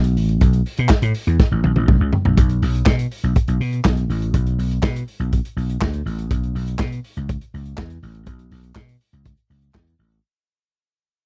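A slap bass and a vintage drum kit start together, setting up a driving, sultry disco groove in a straight four. The electric bass is amped and growly, with a punchy attack that sits up front and moves through a low register. The acoustic drums sound muffled and lo-fi, with a rolled-off top, a medium-tuned snare, a punchy kick, hi-hat, toms and handclaps, all set close in a small room. A drum fill at 1.4 seconds leads into the next section at 2.4 seconds, where the music begins fading out through to the end. The dry, close production recalls a 1970s studio, and this short fragment is cut from a longer piece.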